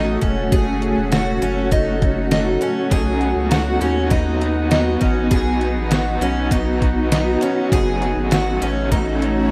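A cloudy, evolving granular pad sits up front from the start, its detuned unison of sine and sawtooth tones blurred by its own reverb, while a picked twelve-string acoustic guitar plays shimmering, octave-doubled arpeggios with a touch of finger squeak, subtle chorus and digital delay. Underneath, a deep, thick sub bass with a saturated sine tone holds the low end. A detuned 8-bit drum machine comes in at 0.2 seconds with a thumpy kick, a medium-tuned snare and hi-hat, giving a sampler-style electronic pulse to this dreamy, blissful dream pop piece in a straight 4/4. At 2.9 seconds, as the harmony moves from F#m to B, a crunchy, overdriven electric guitar enters in the background, double-tracked with tremolo and lush chorus. The short fragment of a longer piece returns to F#m at 7.7 seconds, and its light digital ambience and rough home-demo mix add a hazy, intimate quality.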